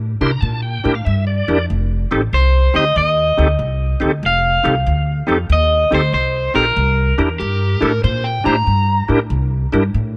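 A laid-back, swaggering electric blues shuffle swings at 94 BPM in 4/4 over C9 and F9 chords, with a woody pizzicato upright bass up front, a bright, reedy tonewheel organ with key click and slow rotary speaker opening on a fill before settling into accompaniment, a twangy, slightly broken-up picked electric guitar carrying the melody from 2.3 to 7.8 seconds, and a dark, overdriven slide guitar adding a second line from 7.4 seconds, all under light reverb in this cut from a longer piece.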